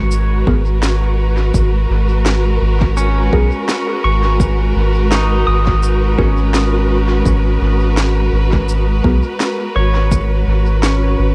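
Spacious and deep, this short ambient dub excerpt, cut from a longer piece, rests on a single minor ninth chord with a lightly swung groove. A round, soft sub bass sits up front under bowed studio strings holding sustained chords with expressive vibrato, while a clean pedal steel guitar, played with fingerpicks and slide, spins arpeggios with volume swells through dub echo. An overdriven, layered electronic kick thuds in the background beneath an electronic shaker and woody snare that also carry dub echo, and a very quiet, muted chord stab with a detuned filter pluck and phaser flickers from 0.5 to 9.2 seconds in an echo-heavy, dry mix.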